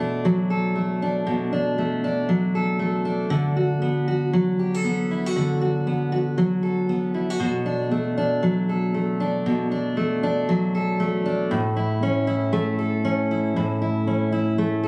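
A fingerpicked steel-string acoustic guitar carries this short pop excerpt alone, its jumbo body giving a full-bodied, up-front sound that spans A2 to A4. The mood is sunny and easy-going, moving at 117 BPM in 4/4 with a gentle 60% swing on the sixteenths, tuned slightly low to A4 = 436 Hz. The harmony drifts from Bm7 to D6, back to Bm7, and settles on A at 11.5 seconds. A moderate echo-chamber reverb with a 1.4-second tail surrounds the guitar, while the phone capture brings in studio ambience and compression. Cut from a longer piece, the passage runs just 14.9 seconds.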